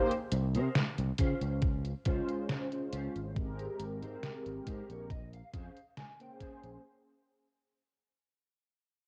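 A tape-softened 8-bit drum machine's hi-hat and snare, joined at 1.2 seconds by a thumpy electronic kick, set a slow, straight 69 BPM pulse for this woozy, nostalgic vaporwave fragment, where growly overdriven fingered bass and round, detuned sawtooth synth brass drift through Cm7, Dbmaj7, Abmaj9 and Bbm9 under a faint, dark clean guitar riff that carries a filter sweep and a fill from 4.2 seconds, all heard through the haze of a home cassette recording that fades out throughout.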